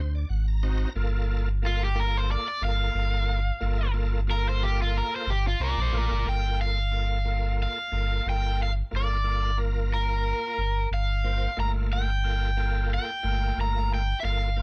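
An overdriven electric guitar, picked through a cranked stack and sitting up front, carries the melody of this brooding, soulful soul blues, entering at 1.7 seconds. Beneath it, a clean, shouting tonewheel organ plays a full accompaniment through a slow rotary speaker with chorus vibrato, opening the piece with a short fill that resolves from D7b9 to Gm7 at 1.0 seconds. A deep sine-toned sub bass doubled at the octave holds down the low end with a fast attack and sustained notes. The groove moves at 90 BPM in 4/4 in G minor, with straight eighths and a slight sixteenth-note swing. The music shifts into a new section at 6.3 seconds. The band sounds as though it is playing live together in one room with little reverb, giving a close, immediate sound in this cut from a longer piece.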